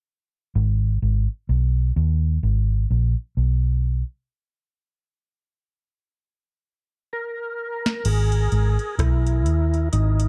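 A slow 64 BPM pulse in 4/4, with a swung sixteenth-note feel, drives this deep, spacious dub reggae fragment in G# minor, cut from a longer piece. A foam-muted fingered electric bass, round, amped and up front, holds down the low end on a G# minor chord, then the harmony falls away into a break at 4.3 seconds. A percussive tonewheel organ takes up the melody at 7.1 seconds, full-bodied and lightly overdriven, coloured by chorus vibrato, a slow rotary speaker and dub echo. A drum fill closes the break, and from 7.9 seconds a soft vintage rhythm box adds a deep kick, tonal snare, metallic hi-hats, rim clicks and a crash, all with a tape-warm analog character. Digital ambience and a dark, warm production give the mix a deep, spacious feel.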